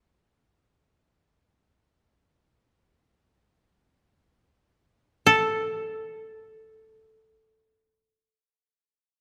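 A moderate concert-hall reverb surrounds this still, meditative fragment of Japanese traditional chamber music, cut from a longer piece, in free time and easing to a slower pace through its opening 5.3 seconds. A solo koto, plucked with fingerpicks, enters at 5.3 seconds with a woody, dry, up-front tone centred around A4 and sounds until 8.3 seconds, its notes lingering in the hall's gentle ambience.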